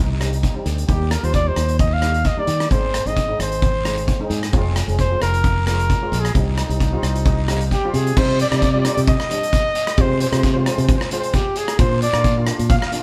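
Played live in a stone room with a moderate one-second reverb, this sunny, bouncy calypso excerpt moves at 132 BPM in 4/4 with a light sixteenth-note swing. A close-miked, warm flugelhorn carries the pop-style solo melody up front with vibrato and scooped notes, over a growly, punchy fingered electric bass and a big acoustic rock kit with a punchy kick, bright cymbals, hi-hat and rim click. Behind them, a shimmering, airy double-seconds steel pan played with medium rubber sticks supplies accompaniment and a fill from 6.8 to 8.2 seconds, while a raspy, vintage guiro sits in the background from 0.4 seconds.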